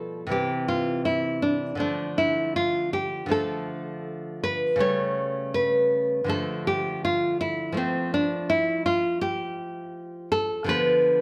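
Solemn and flowing, this short excerpt of a baroque-style classical dance features a solo nylon-string guitar, fingerpicked and placed up front with a warm tone. The playing moves freely in rubato over a 4/4 metre, tuned to A4 = 436 Hz and ranging from B2 to C#5, with harmonies passing through Dm, A7/C# and F before settling on Bdim/D near 10.7 seconds. A moderate recital-hall reverb gives the guitar a gentle sense of space.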